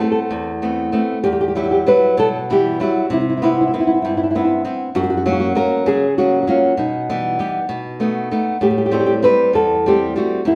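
A gentle 6/8 metre carries this passionate, romantic Italian folk serenade, cut from a longer piece, as an up-front classical nylon-string guitar sings a thumb-plucked melody over the fingerpicked, fresh-stringed flamenco guitar accompaniment, both warm, acoustic and close, played live together in a wet stone room.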